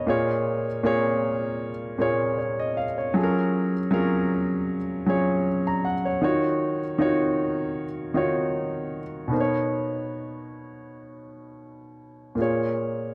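A solo grand piano, intimate and up front with audible action noise, carries this tender, smooth R&B fragment cut from a longer piece, its lightly swung sixteenths moving through A#m7, F#maj7 and D#m9 before shifting to Bmaj9 at 9.3 seconds and settling back on A#m7. The instrument sounds natural and tuned slightly below standard pitch, ranging from A#2 to A#5. Light reverb and a small room ambience frame the playing.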